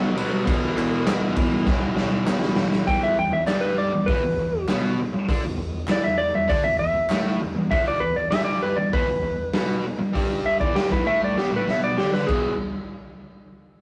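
A double-tracked fuzz guitar opens this raw, swaggering garage rock excerpt at 99 BPM in straight 4/4, its distorted, compressed riff moving between E2 and E4 over an E5 chord. A gritty, saturated drum kit joins almost at once, with a punchy kick, medium-tuned snare, hi-hat, ride and crash heard in a bright stone room, yet carrying a dark, smooth, rolled-off top, and it plays a fill from 1.7 seconds. Crisp group handclaps sit in the background until 7.2 seconds. At 2.9 seconds a clean, twangy lap steel guitar takes over the lead with a slide solo between G4 and G5, sitting up front alongside the fuzz riff, while the drums play another fill near the close as the harmony lands on E and the music breaks off. Moderate reverb and a rough rehearsal-room sound give the recording its raw character.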